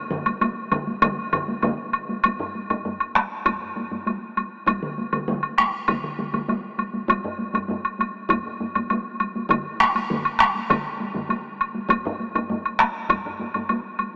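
This excerpt of Japanese traditional taiko drum ensemble music opens almost at once with solo taiko drums, a full taiko ensemble and a woodblock, all entering in the first fraction of a second at a straight 99 BPM in 4/4. The mood is driving and powerful, with heavy sticks striking the acoustic drums. Two solo taiko parts carry a vintage, band-limited character, one sitting up front while the other stops at 11.3 seconds. The two ensemble layers contrast: one has a small-room presence placed up front, the other sounds close and dry. A woody, close woodblock cuts through at the front of the mix, and the whole piece sits in a huge, wet ambient reverb heard through a small-speaker tone, with a brief opening passage giving way to the main section at 2.2 seconds.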